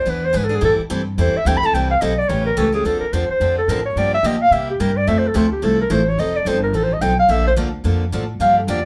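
A mellow, up-front clarinet solo with light vibrato, subtone and scooped notes opens this fiery, bittersweet burst of acoustic string swing, riding over a woody, thumpy pizzicato upright bass on gut strings and a bright picked steel-string acoustic guitar with fresh strings and audible finger squeak, all captured as a band playing live in one room with a wet studio reverb, cut from a longer piece.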